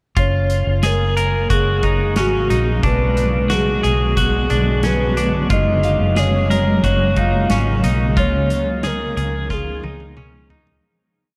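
Dream pop at 90 BPM in F# major, blissful and ethereal, with a soft octave-layered synth lead singing a round, vibrato-touched motif through chorus, tremolo and analog delay over a cloudy, detuned granular pad that enters at 1.1 seconds. A clean, twangy electric guitar picks a bright arpeggio ostinato through lush chorus and delay, while a foam-muted fingered bass holds a dark, sliding line and a loose indie kit keeps a simple, spacious backbeat with a punchy kick and a rolled-off top. A very quiet FM bell scatters warbling notes from 5.8 seconds, and the huge reverb-soaked mix fades out from 8.2 seconds as a drum fill closes the piece.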